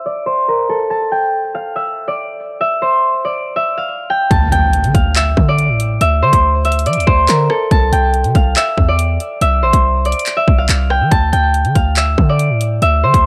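A fingerpicked concert harp opens the piece alone, its ringing acoustic tone pushed up front and treated with a low-pass filter and tape echo while a filter sweep runs over it for the first 4.3 seconds. At 4.3 seconds the drill beat arrives, marked by a distant electronic impact, and the track settles into a cold, ominous half-time groove at 141 BPM in D minor. The drum kit is electronic and close, with a hard-clipped kick, warm hi-hats, handclaps and rim clicks. Beneath it, a punchy, heavy 808-style bass with a sine core, a noise layer and a fast attack that decays sits up front. The harmony moves from Dm to Cadd9 and back to Dm, and the whole short cut has a dry, gritty cassette-tape character with little reverb.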